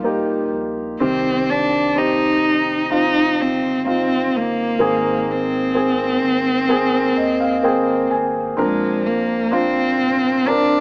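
Heard through a small speaker and bathed in a lush hall reverb, this short pop fragment from a longer piece moves at an unhurried, straight pace with an emotional, hopeful mood. Up front, a single bowed cello carries the melody with vibrato, soft attacks and expressive portamento, while a dark, mellow concert grand piano plays the accompaniment and adds a fill from 6.7 to 8.6 seconds. A round, deep sub bass sits quietly in the background beneath them both.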